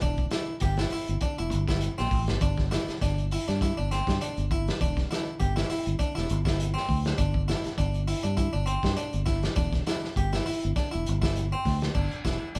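This driving, funky afrobeat groove opens at 0.0 seconds with all three parts playing together: a crunchy breakbeat drum kit, a fingered electric bass and a harpsichord, at 101 BPM in 4/4 with a light 54% swing on the sixteenths. The drums sit up front with a saturated, gritty character, a tight kick, a medium-tuned snare, dark crash and hi-hat cymbals and a rolled-off top. Beneath them the bass runs from E1 to G2 with a dark, round tone, heard both direct and through an amp. The close-miked harpsichord plays dry, plucked arpeggios between C4 and G4 on a single set of strings, with a full Italian-style voice over a G5 chord. The band plays live together in a moderate stone room with a 1.1-second reverb, and the 12.6-second passage is cut from a longer piece.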